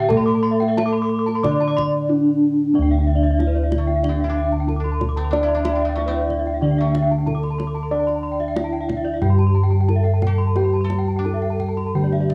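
A cassette-hued home recording in a modest booth carries a ceremonial, shimmering Balinese gamelan piece in D slendro at 92 BPM with uneven beats. Round, up-front bossed gongs anchor the bass beneath a mellow, padded-mallet bronze metallophone melody that shimmers with paired tuning beats. Alongside it come a bright horn-struck metallophone accompaniment and two ringing arpeggio metallophones, one dark and smooth and the other boxy, with all four metallophones steeped in tape colour and plate reverb. A tight, close kendang adds percussion, and a woody, fingerpicked koto joins with a second line at 3.8 seconds in this excerpt from a longer work.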